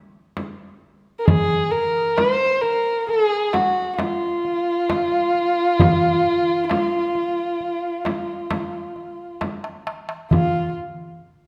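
This Turkish makam ensemble excerpt in F makam kurdi moves in 10/8 at 133 BPM counted in eighths, with a soulful, melancholic mood. A close, dry frame drum played with soft hands opens at 0.4 s, and a dark, woody bowed kamancheh carries the melody up front from 1.2 s with vibrato and portamento. A crisp, high metal-shell darbuka joins just after, and a drum fill at 9.4 s leads into a new section, all set in a recital hall's reverberant space.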